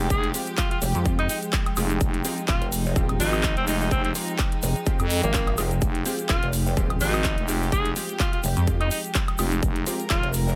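Bass house at 126 BPM in F minor, gritty and bouncy with a swung 16th feel, cut from a longer piece: a punchy electronic kick and a big-room kit of handclaps, metallic hi-hats and woodblock play alongside a growling FM bass with tube saturation and a heavy, pulsing pluck wobble bass with chorus and overdrive, both sidechain-pumped, while a bright, vintage alto saxophone with light vibrato and digital delay carries the melody over an Fmadd9 chord, backed by a bold sawtooth orchestra-hit-like stab with tape grit and delay, clear bowed studio strings holding sustained chords, a grainy tube shaker, and a very quiet ethereal pad on G5, all in a digital ambience.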